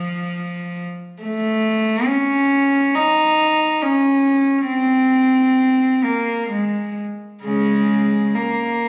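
Classical solo for unaccompanied cello, meditative and mournful, moving freely in a rubato three-time across this brief excerpt cut from a longer piece. The single bowed cello sits close and up front, its pure, nasal sul tasto tone floating on soft attacks through a range from Db3 to Eb4. A wet recital-hall reverb surrounds it, though the phone recording in the room adds a compressed character.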